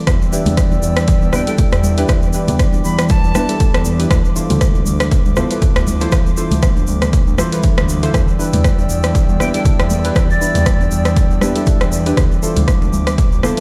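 This short cut sounds as if it is playing through a big sound system in a bare stone room, with little added reverb of its own. It is driving, earthy afro house with a swung sixteenth-note feel. A punchy, overdriven electronic kick sits up front, joined by an overdriven deep house kit of hi-hat and rim click with studio reverb, soft-handed congas that are very quiet, close and dry, and a grainy tube shaker. Underneath, a smooth synth bass with ring modulation pumps against the kick. A nasal, detuned analog pad and soft, chorused chord stabs move together between Em7 and Dm7, while a woody kalimba rings out arpeggios through tape echo in the background. A breathy jazz flute with vibrato and a crisp chiff enters at 1.3 seconds and again at 9.4 seconds, trailed by tape echo.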